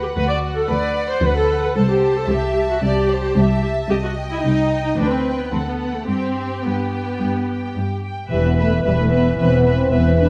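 Heard through a dark, gently reverberant recital-hall sound, this cheerful, graceful classical-period movement for symphony orchestra moves at a quick 112 BPM in G major, with a smooth-topped violin section carrying the melody over a distant second violin line, lush, up-front violas and focused cellos on the bass, until at 8.3 s a pure flute, a very quiet clarinet, a clear, soft-attacked bassoon, a tight, vintage French horn section holding chords and an expressive double bass section in the background join in.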